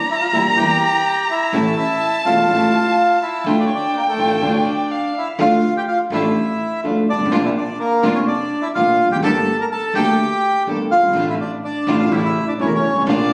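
A bowed violin opens this sultry, passionate tango excerpt, singing up front with vibrato, portamento and a smooth top, and the bandoneon joins at once to carry the reedy, dark melody in a loose, rubato 4/4. Close behind, a concert grand piano lays down accompaniment with a boxy warmth, deep bass and long sustain, while a chamber string section with a period-style, gut-string tone adds bowed stabs in the background. An upright bass, plucked and woody with a thumpy low end, sits underneath in the background. The violin steps away at 5.4 seconds as the music moves into a second section over harmony that drifts from Bb toward Dm and back to A, leaving the bandoneon to lead until the violin returns briefly at 13.1 seconds. The sound is drenched in large studio reverb with a club-like ambience and has the roomy character of a phone recording made in the room.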